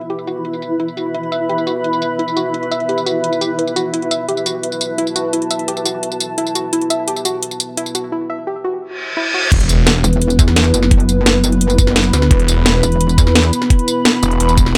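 At 172 BPM in a straight 4/4, this dark technical drum and bass excerpt moves with an aggressive, futuristic edge, opening on an E5 chord. The opening pairs a drum kit of cracking snare, metallic hats, tambourine and crash, its hats, snare, percussion, cymbals and room low-pass filtered and tape-warm, with a deep, moody analog pad of detuned sustained chords and a soft, round pluck tracing arpeggios through chorus and tape echo, both pads and pluck pumping under sidechain. A cloudy, evolving granular pad drifts above with its own reverb from the start, drops out at 8.1 s, and returns at 11.7 s. A reverse cymbal rises into the drop at 9.5 s, where an electronic impact lands, a knocking, up-front layered kick enters, and a snarling, growling distorted saw bass bursts in briefly before a pulsing, heavy, saturated wobble bass takes over, the snarling bass returning later to carry the section. 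The mix sits in light reverb with a digital ambience, the kick and basses pushed hardest to the front.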